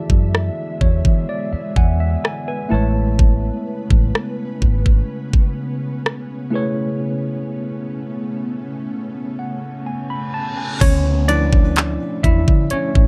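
A slow, straight 4/4 pulse at 63 BPM anchors this romantic, dreamy contemporary R&B excerpt in A major, carried by an up-front trap drum kit with a knocking kick, bright hi-hats, handclaps, rim clicks and crash cymbal. A worn, slightly out-of-tune tine electric piano plays clean accompaniment through its built-in speakers, adding a fill near the start and moving into a solo at 10.8 seconds. Beneath it, an ethereal, airy pad holds mellow, slow-attack chords thickened by ensemble chorus and its own reverb. A round, foam-muted fingered electric bass with a punchy, amped tone sits under the opening, drops out at 5.0 seconds, ahead of the break that begins at 7.0 seconds, and returns with the solo. The harmony drifts from E7 to Amaj9 and then to Dmadd9, while a reverse cymbal and downlifter enter in the background at 10.1 seconds, just before the change. A faint, bright harpsichord plucks a single B4 through digital delay near the end, all within a dark, dry production.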